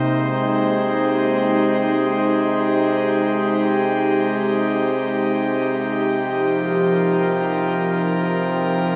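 Bathed in a lush hall reverb, this serene, spacious ambient fragment from a longer piece sets an airy, breathy pad, bright and up front with chorus and shimmer reverb, holding sustained chords that shift from Abmaj7 to F9sus4 at 6.2 seconds over a reedy, close-miked pedal harmonium drone on C3 that stays dry and full.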